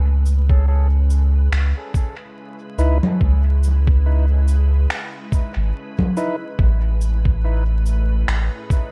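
Spacious and meditative, this ambient dub excerpt moves at 71 BPM in C# minor with a 16th-note swing, shifting from C#m7 to Amaj7 at 6.6 s over a bed of vinyl crackle. A soft, organ-like pad of pure, detuned sine tones fades in with ensemble chorus and built-in reverb, while a deep, round sub bass sits up front and a muffled, thumpy electronic kick plays alongside overdriven electronic cabasa, finger snaps and congas treated with dub echo. From 2.8 to 6.4 s, a clear tonewheel organ plays stabs through a stopped rotary speaker, light overdrive, 12-bit sampler grit and dub echo, with a filter sweep shaping it.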